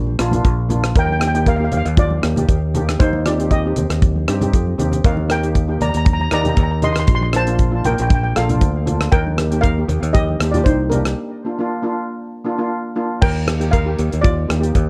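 Calypso at 117 BPM, carefree and festive, led by a metallic, close-miked double-second steel pan melody with a touch of delay over a second, airy steel pan accompaniment, a growly, punchy fingered electric bass up front, very quiet ringing congas that drop out at 11.0 s, and a dry, damped 70s drum kit with dark cymbals, tight kick, hi-hat, crash and rim clicks that adds a fill at 4.7 s before a break from 11.2 s, the mix carrying light reverb and the warbling pitch drift of worn cassette tape in this short excerpt.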